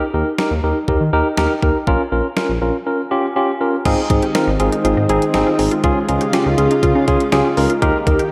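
A steady, straight 4/4 pulse at 121 BPM drives this wistful, nostalgic synth-pop fragment in Ab major, with a clean 12-bit drum machine supplying a thumpy kick and fat snare beneath a barky tine electric piano up front and a smooth, mellow sawtooth bass with vibrato. At 3.9 seconds a lush, warbling unison pad with chorus enters alongside a juicy, squelchy blip pluck whose resonant arpeggios sit in the background through a diffuse ambient delay. The mix is soaked in a dreamy hall reverb as the chords move from Eb and Bbm to Ab and Db.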